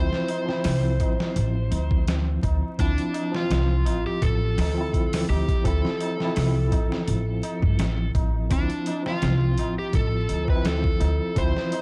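Dark, warm production with vinyl crackle and a roomy studio ambience frames this melancholic trip hop excerpt at 84 BPM in D minor, resting on a Dm7 chord with a light 16th-note swing. Up front, a compressed, pitched-down sampler-style kit plays a thumpy kick, medium-tuned snare and hi-hat, while a woody pizzicato upright bass anchors the low end and a clean tine electric piano carries tremolo and a filter sweep through its low-pass filter. An overdriven slide guitar, played with fingerpicks, takes the melody with vintage 12-bit sampler grit and dub echo, and a high-tuned, short-ringing tabla sits distant in the background.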